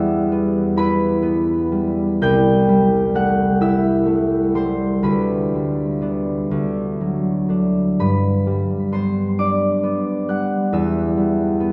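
A ringing, thumb-plucked concert harp sits up front in this graceful, dreamy classical solo, spanning from C2 to G6 in a slow, rubato 6/8 lilt. Its harmony drifts from E minor through A minor seventh and G over D to D, resolving on G before turning back to E minor near 10.7 seconds. A long cathedral reverb surrounds the acoustic harp in a church-like space, and the 11.7-second passage is cut from a longer piece.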